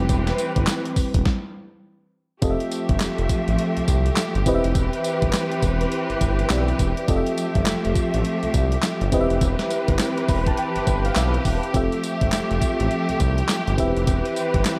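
New jack swing R&B with a bouncy, flirty mood, moving at 103 BPM in C major with a swung sixteenth-note feel, heard here as a cut from a longer piece. A mellow FM electric piano layered with a soft pad carries the accompaniment, its chorused, dreamy tone sitting over sustained chords from a studio string section whose bowed ensemble sound has vibrato, portamento and a smooth top. Underneath, a smooth sawtooth-and-triangle synth bass holds the low end, while a clean 12-bit drum machine sits up front with a thumpy kick, medium-tuned snare, handclaps, hi-hat and tambourine, its tape-tinged samples re-recorded in a large room. The harmony rocks between Cmaj7/E and Fmaj9, and after a brief stop from 1.3 to 2.4 seconds the groove settles into its main section. The electric piano steps forward with a fill from 10.0 to 11.7 seconds, and the overall mix stays dry with little reverb.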